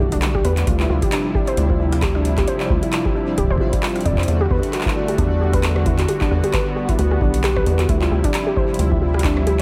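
Swung 16ths at 133 BPM in 4/4 drive this eerie, cerebral IDM excerpt, with a deep electronic kick and a booming analog drum machine of handclaps, metallic hi-hats and rim clicks, both re-recorded in a large room, the drum machine fed through digital delay and entering at 0.1 s. Underneath, a rubbery, hollow square-wave bass bounces with a fast filter pluck, while a smooth, detuned sawtooth pad holds chorused chords that shift between Em11 and Dm11. A warbling, lo-fi pluck spins dark, decaying arpeggios through chorus and digital delay, and a very quiet pulsing gated texture hovers in the background, all set in light reverb and digital ambience.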